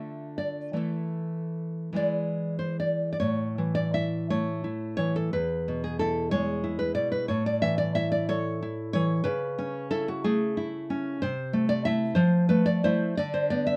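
A rubato 6/8 lilt at 46-64 BPM in dotted quarters carries this wistful, intimate romantic fragment for solo nylon-string guitar in A major, its dark, full-bodied fingerpicked tone sitting up front in light reverb with audible finger squeak, as a brief opening over Dm, Esus4 and E gives way at 3.2 seconds to a longer passage moving from A through A/C# and Am/C to Fmaj7, reaching D7sus2 at 13.2 seconds.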